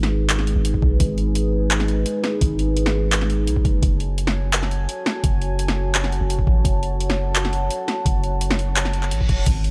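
A gritty, overdriven electronic kick drum, pitched down and compressed into a thumpy hit, drives this tense, heavy half-time drum and bass excerpt from 0.7 seconds onward. Beneath it, a long sustained 808-style bass sits up front with a deep, mellow sine tone, a fast attack and decaying notes. The layered electronic drum kit, also overdriven and up front with studio reverb, adds a woody snare, bright hi-hats, handclaps and crash cymbal. A dark analog pad fills the background with moody, detuned sawtooth and triangle chords with a sub octave and slow attack, colored by chorus and phaser and pumping under sidechain, shifting from G#m to F#m at 3.8 seconds. A brief electronic reverse cymbal rises in at 9.0 seconds, all set in a light, digital ambience.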